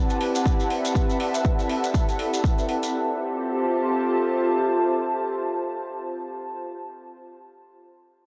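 A lush hall reverb and a cassette-tape haze wrap this short, sunny deep house fragment at 121 BPM in 4/4, with a lightly swung sixteenth-note feel in F major. A warbling, nostalgic pad holds sustained chords with slow attacks and long releases, colored by chorus, phaser and its own reverb, and it pumps against the beat. Alongside it, an airy, breathy pad with a nasal edge and a noise layer sits up front, also chorused and pumping. Metallic hi-hats and grainy acoustic maracas enter at 0.1 seconds, and a punchy electronic kick joins at 0.5 seconds, the kick and hats carrying a gritty 12-bit sampler character. The kick drops out at 2.6 seconds, and the hats and maracas follow at 2.9 seconds as the harmony moves from Cmaj9 to Fmaj9, leaving the two pads to float on their own in a relaxed close.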